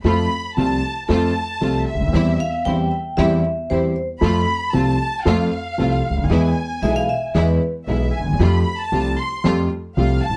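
A dark, bowed violin section carries a melancholic, dramatic tango from the first moment, its expressive vibrato floating over an intimate concert grand piano with deep bass and audible action noise, a woody pizzicato upright bass, and lush, clear stabs from a symphonic string section. At 2.4 seconds a bright, ringing vibraphone struck with hard mallets joins up front as a second line, dropping out of the texture at 7.7 seconds. The rubato feel and close, detailed sound with light reverb give this fragment of a longer piece a brooding, theatrical intensity.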